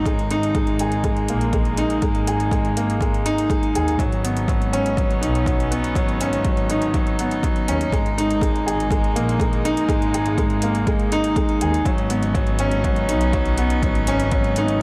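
A clear, woody upright piano riff sits up front with tape echo from the start, over sustained chords from a distant, reedy string quartet with a gut-string, period-style tone, in this cinematic, intimate piece of piano and strings electronica. A lush, bowed double bass section with smooth vibrato carries the low end with sidechain pumping, while a punchy, overdriven electronic kick and metallic, overdriven hi-hats mark a straight 4/4 pulse. The harmony alternates between G#sus2 and Badd9/G#, and the mix sits in light reverb with a small room ambience.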